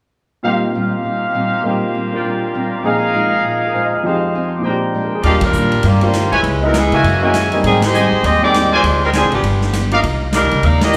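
Clear, woody piano with a long sustain and a dark fingerpicked steel-string acoustic guitar in the background open this swinging, joyful big band excerpt at 200 BPM in Eb major, with an up-front trumpet section adding soft-attack stabs with light vibrato and slapback echo. At 5.2 seconds a warm, roomy saxophone section takes the melody, joined by pizzicato upright bass and a natural-sounding drum kit with a boomy kick and ride cymbal, the band hitting accents at 5.4, 7.8 and 10.8 seconds. Moderate plate reverb and club ambience give the sound a live, through-the-PA feel, and the passage is cut from a longer piece.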